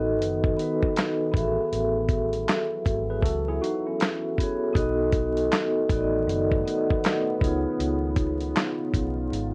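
A mellow soft-mallet vibraphone with slow motor vibrato rings up front through cassette-tape coloring in this melancholic, reflective lo-fi hip hop excerpt, backed by a deep, detuned ambient pad in the background, a round, foam-muted electric bass, and a gritty, compressed sampler-style soul kit of thumpy kick, snare, hi-hat and handclaps that enters at 0.2 s with a swung 16th feel, while a clean tine electric piano with tape echo surfaces briefly from 3.1 to 4.7 s, the whole set in a modest studio reverb with vinyl crackle.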